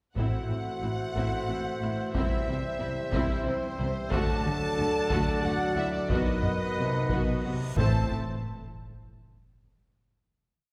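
Set in a steady 3/4 at 91 BPM with a straight feel, this dark, epic orchestral film cue in A dorian is driven by a big taiko drum ostinato struck with hard sticks, its sound compressed and saturated, running from 0.2 to 9.0 seconds. Over it, a focused chamber violin section and a lush symphonic violin section carry the tune an octave apart with rich vibrato, while the violas push a driving rhythmic ostinato with a smooth top and the cellos and double basses lay down an even, bowed bass ostinato, the cellos answering at phrase ends. Mellow French horns with a vintage tone, dark, distant trombones and a clear, close-miked woodwind section hold sustained chords in the background, and a bright trumpet section adds stabs. The harmony moves through Am, C, D and B before returning to Am. A huge reverse cymbal rises from 7.5 seconds into a low impact at 8.1 seconds, where the strings, winds and brass stop while the taiko carries on to 9.0 seconds, and the piece closes on a final hit. 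The whole ensemble sits further back in a wet scoring-stage reverb with a 1.6-second decay.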